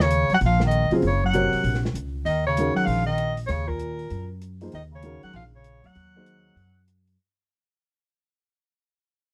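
A breathy soprano saxophone carries the melody over a bright bass clarinet line with scooped notes, woody pizzicato upright bass and a dark jazz drum kit with a boomy kick, in this hypnotic, searching modal jazz excerpt swinging at 195 BPM in Eb dorian on an Ebm11 chord; a boxy upright piano with audible action noise enters at 0.9 seconds, and the dry, close 1970s-style small-room recording fades out throughout.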